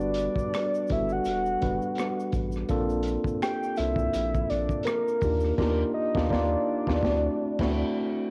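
R&B and neo-soul at a relaxed, smooth 83 BPM with a swung sixteenth feel, this short cut from a longer piece opens with a soft octave-layered synth lead carrying the melody through chorus and cassette tape grit, a mellow tine electric piano sitting up front on Gmaj9, Bbmaj9, Ebmaj9 and D9 chords, a round, deep analog bass underneath, tube shaker and finger snaps tucked in the background until 5.6 seconds, and a crunchy, saturated breakbeat kit with dark cymbals, a high-tuned snare and a tight kick, all set in light studio reverb with a home-cassette character and a band accent from 5.6 seconds.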